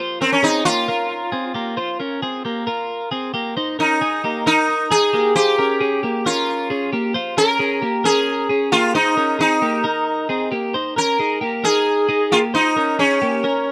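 A straight 4/4 pulse at 134 BPM drives this bright, youthful indie pop excerpt, where a clean, compressed twelve-string electric guitar picks arpeggios from the start while a buzzing, shimmering sitar with tape echo carries the melody from 0.2 seconds over chords moving from Bbmadd9 through Ebsus4, Bbm7 and Ab, with both parts up front in a rough home demo mix with light reverb.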